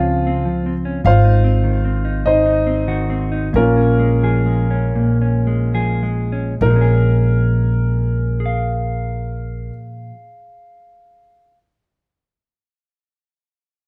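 An acoustic folk-pop ballad in 6/8 and Bb minor, reflective and heartbroken, moves at a slow 33-51 BPM counted in dotted quarters and eases down between 1.1 and 6.6 seconds as the harmony passes from Dbmaj7 through Ab7 to Bbm7. A natural-sounding concert grand piano with a full, deep low end carries the melody up front while a dark, clean, fingered electric guitar accompanies, also up front, and a woody pizzicato upright bass anchors the low register. The band plays live together in a large studio with moderate reverb, and the guitar rings on alone after the piano and bass stop at 9.7 seconds, closing this fragment of a longer piece.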